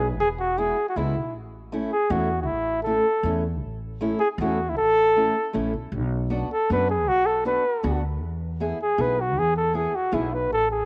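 A mellow flugelhorn carries the melody up front with light vibrato and a close-miked, classical poise, leading a festive, bouncy alpine folk dance in 3/4 at 157 BPM in A major. Beneath it, a thumpy pizzicato upright bass on gut strings anchors the low end, while a fingerpicked ladder-braced acoustic guitar with old strings adds a boxy, woody accompaniment from 0.6 s, colored by cassette tape. The harmony moves from E through A and Bm back to E, and this cut from a longer piece has the light reverb and homespun feel of a cassette home recording.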